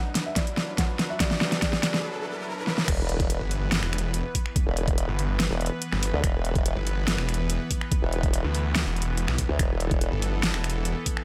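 A muted, mellow felt piano with dub echo opens this heavy, menacing half-time wobble dubstep excerpt over a lush supersaw pad, which pumps and is filtered as the build-up rises with riser, swell and sub drop effects and a drum fill from the overdriven kit and knocking kick. After a short break the drop hits at 2.9 seconds, when a formant-sweep wobble bass enters, joined by a snarling, growling distorted saw bass at 3.4 seconds, both up front with the huge snare. The whole mix sits in light reverb and digital ambience.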